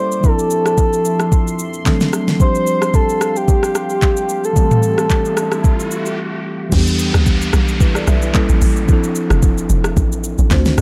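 An amapiano excerpt with a deep, late-night mood, set in a swung 4/4 groove and given a dark, close production with little reverb. It opens with a breathy, flute-like synth lead carrying the melody up front, its chorus and digital delay shimmering over a mellow tine electric piano and a moody, full-bodied ambient pad that sits in the background with chorus, its own reverb and sidechain pumping. A smooth R&B drum kit, electronic and produced with a soft kick, fat snare, crisp hats, handclaps, rim clicks, shaker, toms and crash, sits up front from the start. A riser begins at 4.2 seconds, the lead drops out at 6.2 seconds for a brief break, and the pad stops as the drop lands at 6.7 seconds. There a tight, punchy log drum bass with a fast attack and decaying tail takes the low end alongside the drums and electric piano, while the chords move through Em7 and A7b9 back to Dm9/F.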